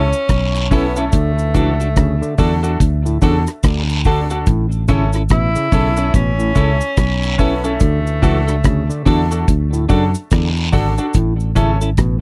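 A distant tenor saxophone with light vibrato and dub echo carries the melody until 9.3 seconds in this warm, laid-back roots reggae excerpt, over a dark, round fingered bass and a deep drum kit with a tight kick up front, clean hollow-body guitar accompaniment with tremolo and dub echo, brilliant piano stabs, mellow overdriven clav arpeggios in the background, and vintage cabasa and guiro, captured in a dry, close 1970s-style studio sound.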